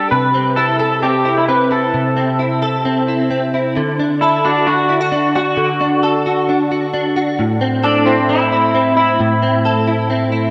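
In a straight 4/4 feel, this bright, nostalgic indie pop excerpt pairs a clean, direct-recorded electric guitar picking compressed arpeggios through ensemble chorus with a twangy, slightly broken-up, lo-fi guitar from a small old amp fingering the melody through analog chorus; both guitars sit up front with tape echo, and the mix is soaked in a lush hall reverb for a dreamy haze as the chords move from C6 to D at 3.8 seconds and Am at 7.4 seconds.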